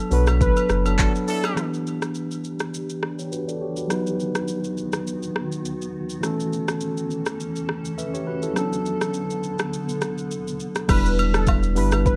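A round, sustained sine sub bass stands out up front in this smooth, sultry afrobeats excerpt at 103 BPM in E dorian, joined by an electronic afro-pop drum kit with a deep kick, smooth hats, handclaps, rim click, shaker and crash cymbal, and by a clean tine electric piano that carries the accompaniment throughout; a velvety, detuned synth lead with chorus and vibrato, agogo bells and woodblock, and a brief, punchy, tight horn section color the opening, while a cloudy, blurred granular pad with a slow attack drifts through the middle from 2.5 to 10.9 seconds, when the lead, bass and percussion return, all in a dry, echo-heavy mix.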